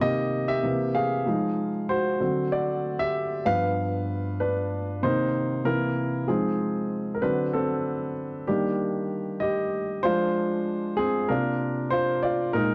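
Bittersweet and smooth, this soul fragment is carried entirely by a single grand piano, played from start to finish at 12.7 seconds and trimmed from a longer piece. The piano has a warm tone and sits up front, ranging from G2 in the low register up to F5, with a light reverb around it. The harmony moves through rich seventh chords, cycling from Cm7 and C7 to Fm7, D7 and G7, then repeating the opening turn before settling on Ebmaj7. At 10.0 seconds a new passage begins, shifting to Fm6 and ending on a suspended C9sus4 that leaves the phrase hanging. The overall production is dark and warm, framing the straight, even groove.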